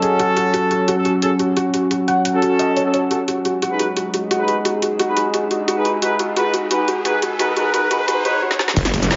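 Drenched in a wet plate reverb with its top end rolled off above 7.5 kHz, this fragment of dark technical drum and bass at 175 BPM feels aggressive and mechanical as it builds over F#m and G#m chords. An eerie, wave-folded FM drone holds sustained chords, while a felt-muted upright piano plays soft, intimate arpeggios with audible action noise; both pump against the sidechain and move through filter sweeps. Up front, a tight, classical-style brass section fires off mellow stabs with light vibrato and a smooth top, trailing dub echo just as the piano does. Beneath them an overdriven electronic drum kit drives woody snares, bright hats, shaker and crash, a background riser climbs from 5.4 s, and a drum fill lands at 8.5 s. At 8.8 s an impact hits as a snarling, detuned unison saw bass growls in with tube-saturated distortion, joined by a knocking layered kick and a very quiet, gritty, pitched-up jungle kit with ride and snare.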